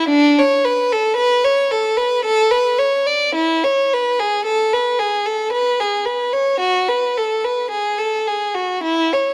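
Classical baroque-style suite movement for unaccompanied violin, serene and dance-like in a rubato 3/4 at 52-56 BPM, tuned to A4 = 437 Hz, with a single rich, smooth, even bowed violin with vibrato playing solo up front from D4 to D5 across 9.3 seconds, captured by close, detailed microphones with light reverb and vinyl crackle, cut from a longer piece.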